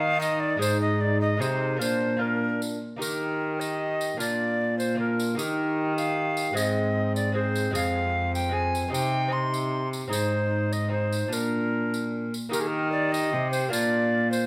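Stately and festive, this short passage from a longer piece is a renaissance-style consort dance in a straight-felt triple metre. A tenor recorder carries the melody up front with an airy, wooden, straight tone, its tongued notes marked by a gentle chiff. Beneath it, a lute fingerpicks a delicate accompaniment on doubled strings, some of them octave-doubled. A solo trombone adds a soft-attacked, close-miked inner voice, while a single bowed cello, also up front, supplies a rich, reedy bass with a gut-string, period character. A jingly tambourine sits close at the back of the blend from 0.2 seconds, and the harmony moves through Eb, Ab, Bb, F minor and C minor, with a new section beginning at 3.0 seconds. The ensemble sounds in a moderate stone room that lends a gentle reverberant glow.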